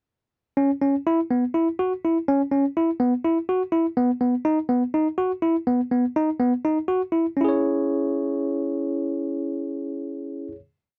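Intricate and tense, this short progressive instrumental in 7/8 at 247 BPM (eighths) and C# minor is a solo bright tine electric piano, clean, direct and up front with light reverb, repeating an ostinato over C#m7 and then B before settling on a final C#m chord at 7.4 s, all captured in a dry, close 1970s-style studio sound.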